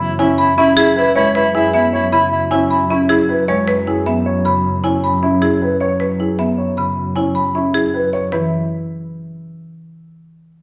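A straight 6/4 pulse at 155 BPM drives this urgent, hypnotic stretch of minimalist classical pattern music, cut from a longer piece and resting on an E over F# harmony. A bright, percussive hard-mallet marimba on padauk bars carries the melody, close-miked and dry. Beneath it sit a rosewood marimba played with medium mallets, a dark, mellow baby grand spinning arpeggios with long sustain, and a rich, distant bowed double bass section holding F#2 with light vibrato. A smooth soprano saxophone with vibrato sits up front on a second line until 3.4 s, a large, wet studio reverb fills the space, and the harmony moves to F#7 at 8.3 s.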